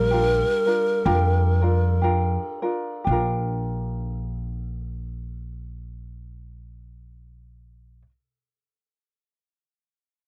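This is a dry, close recording with the intimate feel of a 1970s studio. It is a sunny, relaxed Hawaiian piece in Bb major, tuned slightly sharp to A4 = 443 Hz, cut from a longer whole and set in a slow 4/4 of about 56 to 67 BPM with a lazy swing on the eighth notes. Up front, a bamboo pan flute carries the melody with a breathy, reedy tone, tongued chiff on its attacks, vibrato and a touch of tape echo, while a full-bodied jumbo steel-string guitar is fingerpicked softly in the background as a second line. Both of those voices fall away at 2.0 seconds over an opening Bb6 chord, as the tempo eases back through the first section until 3.1 seconds. A light, thumb-plucked tenor ukulele with a bright sparkle keeps the accompaniment going, and a pizzicato upright bass on steel strings adds a woody, growly, thumpy low end, both sitting close and forward through the second section to the end.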